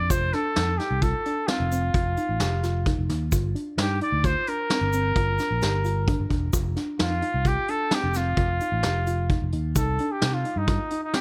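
Striding in a straight 7/4 at 131 BPM, this driving, intricate progressive instrumental, cut from a longer piece, sets a vintage, classical-style trumpet melody with tape echo up front over dark, round pluck arpeggios with chorus, a punchy fingered electric bass, a brushed drum kit with a rolled-off top, and a grainy shaker in the background, moving from F7 to Cm inside a small room reverb.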